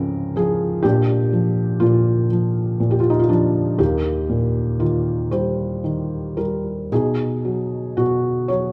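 Peaceful and warm, this short passage of lyrical classical solo piano unfolds in a gentle 6/8 with a free, rubato feel. A felt-muted upright piano carries the whole 8.7 seconds alone, its tone soft, mellow and intimate, sitting up front and close to the listener. The playing spans from Db2 up to C#5, drifting through Db, Bb and Eb before settling on a Badd9 chord at 6.9 seconds. A moderate scoring-stage reverb adds a natural sense of space around the muffled hammers. The dark production keeps the sound hushed and tender, and the passage is cut from a longer piece.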